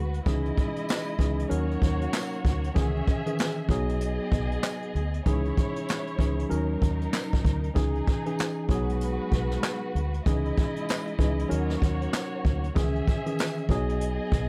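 Boom-bap hip-hop in C# dorian at 96 BPM, this gritty, dark cut from a longer piece rides a swung 16th-note feel over a looping progression of C#madd9, D#m7 and B6 chords. A jazz brush drum kit sits up front with a boomy kick, a medium-tuned snare, hi-hat and handclaps, sounding natural in a small room, while a deep dub fingered electric bass holds down the low end with a round, foam-muted tone. A worn, slightly out-of-tune tine electric piano, also up front, carries the accompaniment through a cassette-tape coloring with filtering and plate reverb. Distant bowed string stabs with vibrato, portamento and a soft attack drift behind, shaped by filters, delay and plate reverb. A jingly, saturated tambourine enters at 0.9 seconds, very quiet in the mix, and the whole track is wrapped in light reverb and vinyl crackle.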